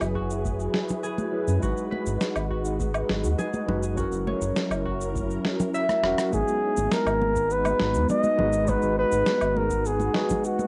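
A dark flugelhorn with a smooth top carries the melody in a classical style from 6.0 s, sitting up front with tape echo in this wistful sunset chillout piece cut from a longer work. Beneath it, a round, deep analog bass built from detuned sawtooth, sine and triangle tones holds the low end with a fast attack. A silky string machine with a slow attack, ensemble chorus and 12-bit sampler grit sustains mellow chords. A clean tine electric piano, heard as if through built-in speakers, sits in the background, and a fingerpicked concert harp plays ringing arpeggios until 7.5 s; both carry tape echo. The groove comes from an overdriven, gritty kit of electronic woodblock, shaker, medium-tuned snare and rim click, a deep, tape-warmed electronic kick, and close, dry congas played with soft hands, with a drum fill at 5.9 s leading into the second half. The harmony moves from F#9sus4 through G#m7 and F#7, and the piece is a home cassette recording with moderate studio reverb.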